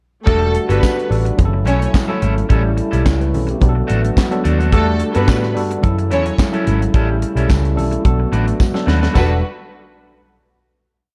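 A dark, warm disco production with light small-room reverb carries a glamorous, danceable groove at 108 BPM in E dorian, where a tight funk kit plays a four-on-the-floor beat with sixteenth-note hats and clap-layered snare, a foam-muted vintage bass runs a syncopated line with chromatic approach notes, twangy, slightly broken-up guitar chops sixteenths, a worn, lightly overdriven tine electric piano adds syncopated chords and short fills, a lush, woody string section plays short riffs, a mellow French horn section holds a background pad, and very quiet congas and a jingly tambourine enter at 0.8 seconds, before a drum fill at 8.6 seconds leads into a final Em11 chord at 9.2 seconds.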